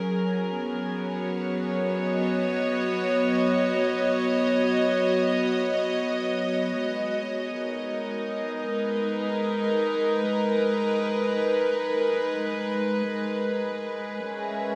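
Peaceful and serene, this ambient excerpt drifts in free time in B major, with a single string section playing alone for its full 14.8 seconds. The bowed ensemble sounds dark and pure, played sul tasto with a soft attack, and it sits close and up front, floating between F#3 and E5. A tape echo trails behind the strings, while a concert hall reverb with a 2.2-second decay wraps the sound in a wet, spacious halo. The harmony moves slowly from B6/F# to G#m7 at 6.8 seconds and then to C#m7/G# at 13.6 seconds, giving the passage a calm, suspended quality.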